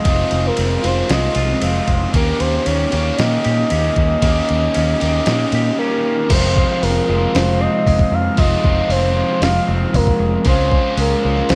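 Dreamy and hazy, this short shoegaze and dream pop passage in rock form drifts along in a straight 4/4 feel, cut from a longer piece. A breathy, flute-like synth lead carries the melody from the first moment, its soft tone thickened by a sub octave and a touch of vibrato, with chorus and digital delay trailing behind it. Beneath it, two overdriven guitars play riffs: one biting and treated with analog chorus, the other crunchy, sitting in the background and smeared by reverse reverb. A bright, twangy electric guitar adds compressed, picked arpeggios further back in the mix, bathed in lush chorus and digital delay. From 0.1 seconds, a round, punchy, foam-muted fingered bass sits up front with a dark, vintage tone, while a clean, sampler-style 12-bit drum machine brings a thumpy kick, fat snare, hi-hat, ride and crash. The harmony moves from Fm7 to Eb7, and after a new section begins at 6.3 seconds, it returns to Fm7 and settles on Dbmaj7, all under a light reverb.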